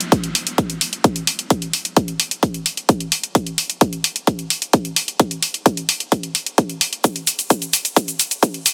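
Dense, heavily limited and lightly reverberant, this powerful, anthemic EDM build-up cut from a longer piece drives at 130 BPM in a straight 4/4, with an up-front, layered electronic kick drum that is punchy, overdriven and high-pass filtered running from 0.1 to 8.5 seconds alongside overdriven, produced electronic hi-hat and shaker, and a drum fill arrives at 7.0 seconds.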